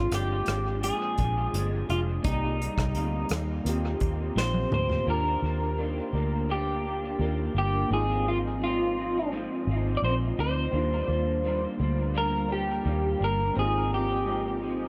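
This laid-back, dreamy indie and bedroom-pop passage, cut from a longer piece, opens at 85 BPM in Eb major (tuned to A4 = 438 Hz) with a slightly broken-up electric guitar melody soaked in lush chorus and dub echo. Beneath it sit a second, lo-fi fingered guitar with warbly pitch drift, mellow, detuned synth keys in the background, and a round, punchy, foam-muted bass up front. An unplugged drum kit played with bundle sticks, with a tight kick and medium-tuned snare, enters at 0.1 s, plays a fill from 4.4 s and stops at 5.1 s, after which the guitars, keys and bass drift between Ebmaj7 and Ab6 chords in a small, echo-heavy room.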